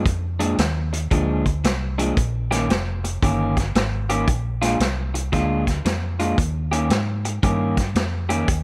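Rollicking and soulful, this brief electric blues shuffle excerpt swings in 4/4 over alternating Bb7 and Eb7 chords, with a slightly broken-up, compressed electric guitar riff through a small old amp sitting up front, a dark, round, punchy foam-muted fingered electric bass underneath, and a vintage drum kit of hi-hat, tight kick and medium-tuned snare with a rolled-off top, captured in a small room.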